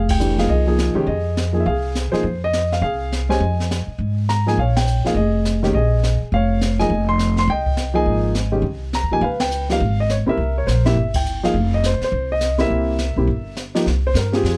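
A moody, late-night jazz piano trio swings in this short excerpt cut from a longer piece, with an intimate, up-front grand piano carrying the melody over a woody, thumpy pizzicato upright bass on gut strings and a small-room brush kit of dark cymbals, high-tuned snare and boomy kick. The band hits accents together at 0.1, 4.7, 9.4 and 11.1 seconds as the minor-key changes move through dominant chords before settling at 13.9 seconds, all caught dry and close enough to hear the piano's action noise.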